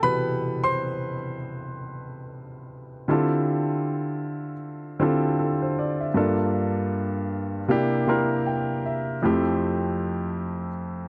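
A gently swung 4/4 groove at 78 BPM, with sixteenths swung at 58%, carries this romantic soul piece in C major, cut from a longer performance and tuned to A4 = 444 Hz. A single grand piano, up front with a warm tone, plays alone across F2 to C6, moving through Cmaj7, Dm11, Gm7 and C7 before settling on Fmaj9, with a fill from 7.7 to 9.2 seconds. The sound is dry and close in the manner of a 1970s studio, touched by a small room reverb.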